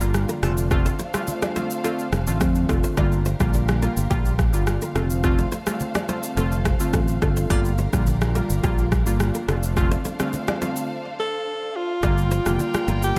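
Set in a small room, this excerpt from a longer afrobeats piece has a close, intimate feel, with the drums, bass, keys and saxophone placed up front. At 106 BPM in a straight 4/4, the mood is hypnotic and sultry as the harmony sways between F6 and Gm7. An electronic afro-pop kit sets a deep kick, rim click and shaker against very quiet, damped congas, while a round, punchy fingered electric bass anchors the low end. Glassy digital keys with a sine-like tone, fast attack, chorus and a filter sweep carry the accompaniment, a dark, woody string section holds lush bowed chords, and a full-bodied nylon-string guitar riff, fingerpicked with audible finger squeak and touched with delay, threads through. During a break that begins at 10.9 seconds, a breathy alto saxophone with vibrato takes a short solo melody from 11.2 seconds.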